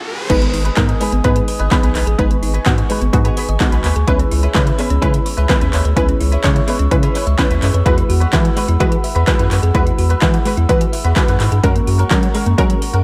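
Dance-pop in an energetic, confident mood, this excerpt rides an overdriven deep house drum kit with a fat snare and metallic hats over a round analog bass, while punchy detuned sawtooth chord stabs, a twangy clean electric guitar riff, mellow tine-like thumb-piano synth arpeggios with tape echo, and ethereal glass harmonica chords in the background, the stabs, pluck, harmonica and bass all pumping to the sidechain, move through G#m, C#m7, Eadd9 and F#add9 in a dry mix.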